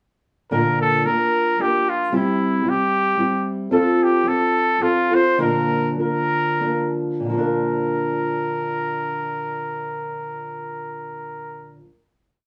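In a lilting, lightly swung three-four, this short, romantic and proud mariachi piece sets a clear, smooth-topped classical-style solo trumpet, singing motif-based song phrases up front, over a small, thumb-plucked nylon-string guitar strumming sixteenths in open chord shapes with audible finger squeak, all in a wet, live-room ambience, slowing from 3.7 to 7.3 seconds before settling on a final chord held until about 11.3 seconds.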